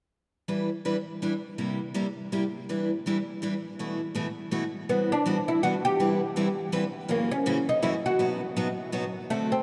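A picked steel-string acoustic guitar opens at 0.5 s, laying down a bittersweet jazz waltz in three with a lilting swing. Its concert-toned chords sit up front and move through minor-seventh, dominant and suspended colours before settling onto a dominant by the close. At 4.9 s a plectrum-plucked oud takes the melody, its woody, fretless voice and doubled strings giving the line a warm, acoustic character in the middle register. The oud stays up front beside the guitar, carrying the tune over chords that turn through an added-ninth minor and a major seventh toward an unresolved ending. Everything rings out in a vast, echoing cathedral space whose long wet reverb lets each note hang and blur into the next, and this short passage, cut from a longer piece, ends at 9.6 s.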